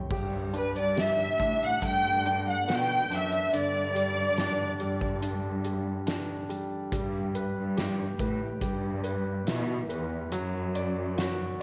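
A slow, straight 4/4 pulse at 70 BPM carries this tender, emotional pop ballad, cut from a longer piece, with a soft-mallet drum kit giving a boomy kick, fat snare and mallet-struck cymbals in a big acoustic room. A clear, intimate concert grand piano with audible action noise and long sustain plays the accompaniment over Gadd9, Em/G and D/F# chords, while a dark, lush cello section with vibrato and portamento holds the bass. From 0.6 to 5.2 seconds a woody violin section, bowed sul tasto and touched with slapback echo, carries the melody up front, and the recording sits in a moderate echo chamber reverb with small room ambience.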